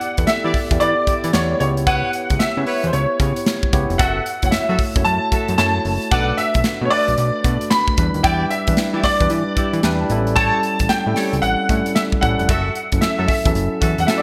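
Punchy and confident, this new jack swing excerpt in E dorian moves at 113 BPM with a 16th-note swing, as a clear, up-front baby grand piano carries the melody with an ensemble chorus over a tine electric piano heard through its built-in speakers (adding a brief fill at 9.6 seconds), an airy studio drum kit with a tight kick bathed in gated reverb, a fat, saturated sawtooth bass with a filter pluck, and mellow, smooth-topped horn stabs, all set in a bright 1980s-style digital production through chords from Em7 to A7 and F#m7.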